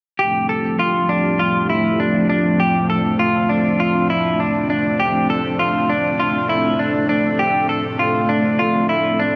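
Floating and ethereal, this dream pop passage in F major moves at 100 BPM in a straight 4/4 and is cut from a longer piece. A vintage string machine set to a cello voice holds sustained chords throughout, its sawtooth tone rounded by a sub octave, a soft attack and an ensemble chorus that make it full and mellow. Over it, a semi-hollow electric guitar picks clean arpeggios between D4 and A4, bright, compressed and up front, coated in lush chorus and tape echo. Both parts play from 0.2 s to 9.4 s, resting on a single F69 chord for the whole stretch. A wet plate reverb with a 3.2 s decay bathes the mix, and the production stays dark and warm.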